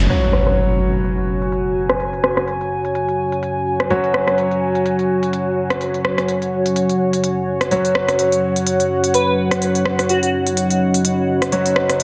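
Bass house with a swaggering, aggressive edge, cut from a longer piece and riding a swung sixteenth-note groove. A big-room dance drum kit sits up front, its electronic, layered sound overdriven and re-recorded in a large room, with crisp hi-hats and rim clicks run through low-pass filters and a filter sweep across the whole passage. An electronic impact hits at 0.1 seconds and rings until 2.0 seconds, while a deep, moody ambient pad holds sustained sawtooth chords with a sub octave, chorus and its own reverb, also under a filter sweep. A warbling, nostalgic tape-like pad adds a mellow lo-fi texture in the upper register, and a clear, intimate baby grand piano plays stabs with audible action noise and tape echo. Late in the passage, from 9.1 to 10.3 seconds, an airy, dreamy lead slips in with vibrato, 12-bit sampler grit and tape echo, all set in a lush hall reverb within a dense, heavily limited master.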